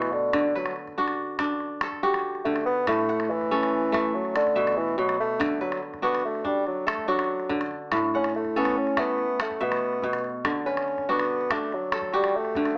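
A mellow bassoon carries the melody as a classical-style solo with light vibrato, sounding distant and roomy yet up front, over bright, ringing kora arpeggios that are fingerpicked and crisp and a small calabash keeping the percussion in a live-room setting. This joyful, hypnotic West African traditional piece moves in 12/8 at 95 BPM in D major, cycling through D, A, B minor and B5 chords. Cut from a longer piece, the 12.8-second clip has a moderate small-room reverb and a small-speaker sound.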